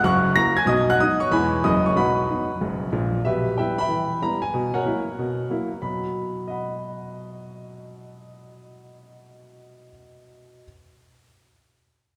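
A warm, boxy grand piano sits up front as the lone voice in this playful, swinging stride jazz excerpt, moving at 186 BPM in B major across a range from deep bass to bright upper register. The harmony opens on an F#7 before settling into B, passes through an Em/B and an F#7/B, and returns to B at 5.8 seconds. A wet concert hall reverb with a 2.3-second decay surrounds the piano, giving it the spacious ring of a church or large hall.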